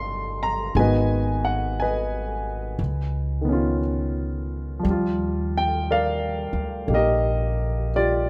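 Late-night and romantic, this short excerpt cut from a longer jazz ballad moves at a slow, swung pace in four, with a grand piano and an upright bass both sitting up front for the full 8.3 seconds. The piano is intimate and natural, its action noise audible, while the plucked bass has a woody, thumpy steel-string tone. A moderate large-studio reverb surrounds them as the harmony drifts from Cm9 through Abm7 and Db9 to settle on Ebmaj9 at 4.8 seconds.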